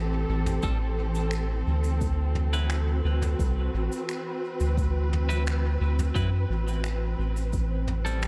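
Dark, lush bowed strings and a round, soft dub sub bass open this hazy, deep ambient dub excerpt at 87 BPM, joined within a second by a brushed kit of cabasa, finger snaps and toms with dub echo, twangy clean electric guitar stabs also echoing, and a tape-warm electronic kick that drops out at 7.7 seconds, while the Am7 to D13 harmony returns to Am7 just as a bubbling, resonant stepped-filter texture with chorus surfaces in the background at 7.5 seconds.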